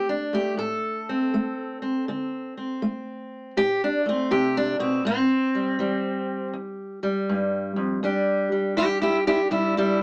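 Mournful and smoky, this short excerpt of acoustic country blues is cut from a longer piece and moves at an unhurried pace with a loose, swung lilt. A lone fingerpicked steel-string acoustic guitar carries it from start to finish, playing solo across the full 10 seconds and reaching from its low bass strings up into its middle register. The guitar sits up front with a warm, boxy character and a concert-style clarity. Its harmony drifts from an open D5 to Am7 at 5.0 seconds and then to Em7 at 8.0 seconds, lending a weary, searching feel. A moderate studio ambience surrounds the playing, and the overall sound has the narrow, compact quality of a small speaker.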